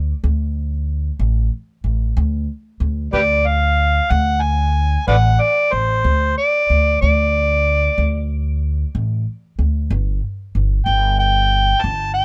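Acoustic country blues in a rollicking 12/8 at 62 BPM in D major, with a gritty, rough home-demo feel in a small room, cut from a longer piece. A woody pizzicato upright bass on steel strings sits up front from the start, and at 3.1 seconds an amplified, overdriven harmonica takes the lead with light vibrato, tongue slaps and scooped notes in a jazzy solo style. The harmony moves from D5 to G5 at 9.9 seconds.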